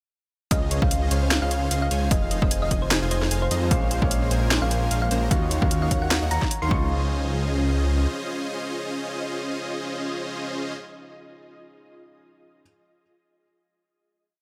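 A dense, compressed supersaw riff in dotted-rhythm chords drives this lush, euphoric future bass piece at 150 BPM in Db major, pumping against the sidechain alongside a round, tine-like thumb-piano-like synth pluck that repeats its melody through chorus and dub echo, a soft, dark round pluck arpeggiating in the background, and a thick, detuned saw bass up front. A punchy, overdriven electronic kick and a trap kit with a sharp snare and bright hats carry a half-time beat with hat rolls through the drop until about 6.9 seconds, while an ethereal, airy pad enters at 2.0 seconds, very quiet, under chords moving from Dbmaj9 through Fm7, Bbm9 and Ebm9. A felt-muted upright piano with intimate, held chords and syncopated pushes enters at 3.7 seconds and carries on alone to the end at 12.6 seconds after the final hit, all in a dry, close sound.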